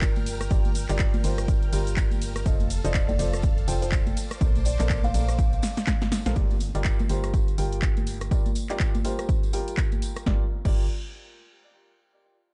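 Swung sixteenths in 4/4 carry this soulful, bittersweet piano house cut from a longer piece, built on a punchy, tape-warm electronic kick up front, a layered house kit of punchy snare, hi-hat, handclaps, rim click, cabasa, ride and crash, and close, dry tambourine and congas played with hard hands in the background. A hollow, percussive organ-like FM bass, a woody upright piano riff roughened by 12-bit sampler grit, low-pass filtering and dub echo, and shimmering sawtooth string-machine violins holding sustained chords all pump with the sidechain. A plucked, ringing kalimba melody with dub echo sits in the background from 0.9 to 5.7 seconds, a drum fill and band accent lead into a new section at 6.4 seconds, and the dark production is wrapped in digital ambience.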